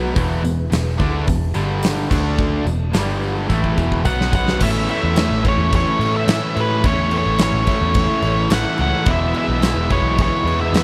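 Classic rock at 108 BPM, sunny and confident, in which three overdriven guitars play riffs in the background: one crunchy, one bright and distorted, and a double-tracked semi-hollow with spring reverb. They sit over a round, foam-muted vintage bass, a huge arena kit with a fat snare, punchy kick and pumping room sound, a jingly tambourine and a very quiet, warbling string-machine cello pad, with a drum fill at 3.5 seconds and a dark octave-fuzz lead guitar carrying the melody up front from 4.1 seconds.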